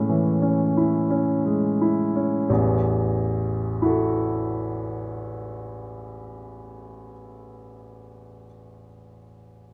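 The recording sounds intimate and close, with detailed microphones catching a warm, natural baby grand piano placed up front in light reverb. This short excerpt, cut from a longer piece, is solo impressionist classical music in A major, luminous and dreamy in mood. The tempo sits slow, around 41-48 BPM in 4/4, played with a free, rubato feel and slowing down over the opening 2.5 seconds. The piano spans from A1 to A5, opening on an Amaj7 harmony before settling onto an A5 chord at 2.5 seconds, where a new section begins. The instrument sounds alone throughout, from 0.0 to 9.7 seconds.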